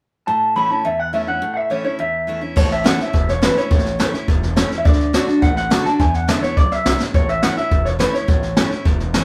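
An upbeat, rollicking rockabilly excerpt at 210 BPM in A major opens with a twangy, slightly broken-up electric guitar through a small old amp carrying the melody up front over a bright, picked dreadnought acoustic guitar, before a woody, thumpy pizzicato upright bass with gut strings and a roomy brush drum kit with dark cymbals, a high-tuned snare and a boomy kick join at 2.6 seconds, the drums adding a fill at 7.0 seconds as the chords move from A through D and E7 back to A, all captured as a band playing live in one room with moderate reverb.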